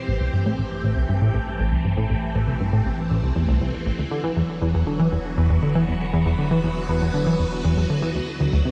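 A swirling, vintage string machine opens this cosmic, expansive excerpt of sequencer-driven space music, holding bright sustained chords through ensemble chorus and phaser while a deep, round sine sub bass fades in underneath from the start. At 119 BPM in a straight 4/4, a punchy, funky analog bass riff enters at 0.1 s and sits up front, its fast filter pluck decaying over subtle chorus and delay as the harmony moves from Am7 to Esus2 at 4.1 s and on to D at 8.1 s. The echo-heavy mix sits in a moderate spring reverb with a cassette-tape character and a faint mains hum.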